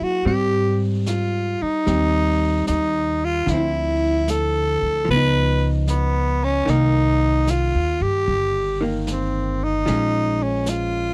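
Jazz ballad in C minor at a slow 75 BPM with a gentle swing, wistful and intimate, heard as a short fragment of a longer piece with chords moving from Abmaj7 through Dm9, Db9 and Cm7 to Bbm7. An up-front tenor saxophone carries the melody with a breathy, raspy, growling tone, while a dark, clean hollow-body electric guitar comps with picked, compressed chords and a woody, growly pizzicato upright bass sits prominently beneath. A soft brush kit on snare and hi-hat joins at 0.3 s in the background, its rolled-off top suiting the dry, close 1970s-style studio sound.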